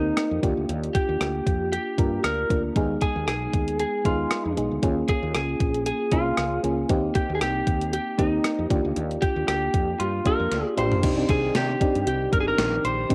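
An uplifting, glossy 1980s-style pop fragment cut from a longer piece, where a slightly broken-up, picked lead guitar carries the melody up front over a mellow FM electric piano with chorus and a cassette tape effect, a growly, woody fretless bass, and a thumpy gated drum machine with a gated reverb snare that plays a fill at 10.5 seconds before a very quiet, brassy detuned sawtooth pad enters at 11.0 seconds, all set in a light digital ambience with a home-cassette character.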